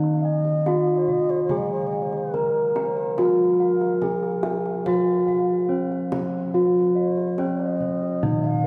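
A steady, straight pulse in four carries this serene, ceremonial gamelan passage, a brief cut of under nine seconds from a longer piece. Bronze metallophones lead. An up-front melody rings dark and smooth under a wooden mallet, while a lower accompaniment sounds soft and full through padded disc mallets, and a higher arpeggio line adds a mid-forward bronze shimmer. Two sets of bossed gongs sit very quiet in the mix: one traces round, beating arpeggios high above, and the other holds a smooth bass line below. A soft-handed kendang adds tight, vintage-toned percussion, and a mellow end-blown bamboo xiao enters at 0.1 seconds with a pure, straight-toned second line and lifted highs. A cathedral reverb with a long 5.5-second tail bathes the ensemble in a resonant, spacious hall sound.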